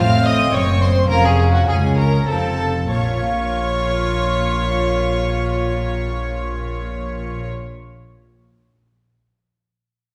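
In a straight 3/4 at 94-111 BPM, this stormy, dramatic baroque-style concerto movement in B-flat minor pulls back in tempo over its opening 2.9 seconds before moving into a new section. A single reedy solo violin carries the melody with period-style gut-string tone, shadowed above by a rich violin section set in the background with a smooth top, and joined by a close second violin section playing the second line with light vibrato. A delicate fingerpicked lute, its double gut strings partly octave-doubled, supplies accompaniment alongside a warm viola section, and it rings on briefly after the bowed strings stop at 7.5 seconds. Underneath, a distant cello section and an up-front double bass section anchor the bass, the basses giving the lowest register real weight. The harmony moves from F through Ebm/Gb and Bbm/F to F7 before landing on Bbm. The whole ensemble is heard from further back in a wet recital hall with a 1.5-second reverb tail.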